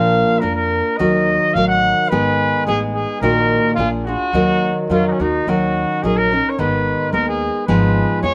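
Mexican folk in the mariachi tradition, this short, passionate and dramatic excerpt moves at 108 BPM in 2/4 with a rubato feel in E-flat minor, tuned to A4 = 435 Hz and cut from a longer piece. A clear, classical-style trumpet with light vibrato and a soft attack carries the solo melody up front, though its tone sounds distant and roomy, while a bright, full-bodied nylon-string guitar, fingerpicked and touched with slapback echo, accompanies throughout. Underneath, a woody, growly upright bass plays pizzicato at a lower level, and the dry outdoor recording follows a chord path from Bb through Ebm and Abm to a closing Fdim/Ab near 7.7 seconds.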